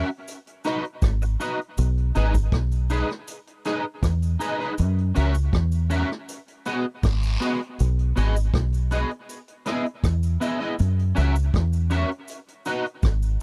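A bright, twangy electric guitar on the edge of break-up opens this laid-back roots reggae excerpt at 80 BPM, its picked accompaniment coloured by ensemble chorus and tape echo. Moments later a vintage acoustic drum kit with a punchy kick, hi-hat and rim click arrives, joined by distant cabasa and guiro, and at 1.0 seconds a deep, dark, round dub bass, fingered and foam-muted, settles in up front. Cycling through G#m7, B6, Emaj7 and F#7, it has the dry, close sound of a 1970s studio with little reverb, and the guitar drops out at 12.8 seconds.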